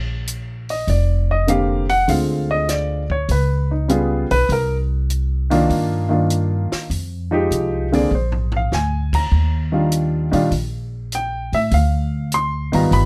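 Swinging and sophisticated, this excerpt from a longer jazz piano trio piece moves at 100 BPM in Bb major with a strong swing feel. A woody, thumpy pizzicato upright bass opens at 0.0 seconds, joined by a dry compact cocktail kit with dark cymbals, a high-tuned snare and a punchy kick, then an up-front upright piano with short sustain carrying the melody through rich chords like Db7#11, Fm9 and Ebmaj9. The close, detailed sound has little reverb, and a drum fill lands at 8.1 seconds.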